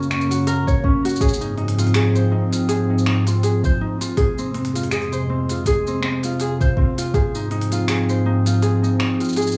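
Lo-fi, cassette-worn and lightly reverberant, this hopeful, pastoral folktronica fragment at 81 BPM in Ab mixolydian sets a dark, warbling, detuned tape-like pad holding sustained chords under an up-front, fingerpicked acoustic ukulele playing light arpeggios through analog delay and plate reverb, while an organic electronic kit of finger snaps, crisp hi-hat and shaker swings gently on 16ths and a soft electronic kick joins from 0.7 to 7.3 seconds, moving through Gb, Ab6 and Fm.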